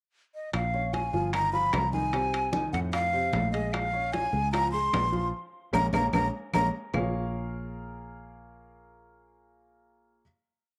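A breathy, vibrato-laden flute leads this short, driving and sophisticated Afro-Cuban jazz piece in Bb minor at 150 BPM, playing motif-based phrases with a soft attack and a slapback echo from 0.3 to 6.7 seconds. Beneath it, a dark, foam-muted fingered electric bass plays a tumbao that anticipates the chords, while an intimate upright piano with audible action noise and a woody tone plays a montuno in octaves. In the background, low-tuned congas with a thick, damped skin, round vintage-sounding bongos in steady eighths with hand bell, ringing metal-shell timbales with bell, and woody claves on a two-bar time line play through a band accent and drum fill before a final chord from 6.9 seconds, all set in a wet spring reverb with small-room ambience.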